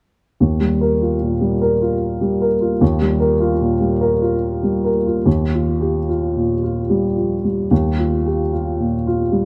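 Classical and intimately hopeful, this short passage cut from a longer piece moves at a rubato 74 BPM in 3/4, tuned to A4 = 439 Hz, with a warm, woody upright piano sitting up front in an accompanying role between Eb2 and Bb4, opening on an Ebadd9 chord at 0.4 s and moving into a new section at 5.3 s, all captured by close, detailed microphones with light reverb.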